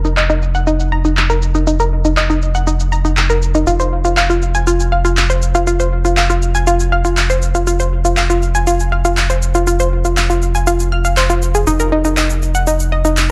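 Dark and cinematic, this melodic techno excerpt moves at 120 BPM in a straight 4/4, with a round, deep analog bass holding F1 up front under tube saturation while a detuned sawtooth analog pluck spins arpeggios between Eb4 and F6, treated with chorus, dub echo and a filter sweep. Layered electronic shaker and handclaps sit lower in the mix behind low-pass filters, and the harmony moves from Eb5 over F to F5 at 3.7 seconds before the chords drop out at 11.7 seconds. The production is dark, with light reverb and a digital ambience, and the pluck stops at 13.1 seconds just before the bass and drums.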